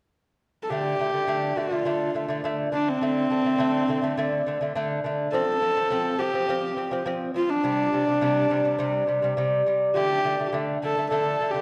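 Mongolian traditional music, windswept and solemn, at 104 BPM in D yu mode: a husky, nasal horsehead fiddle with light vibrato, portamento and a slapback echo carries the melody from 0.6 seconds, while a bright, delicate fingerpicked nylon-string lute with double strings plays arpeggios beneath it from 0.7 seconds, all set in a dark production with a lush scoring-stage reverb in this short cut from a longer piece.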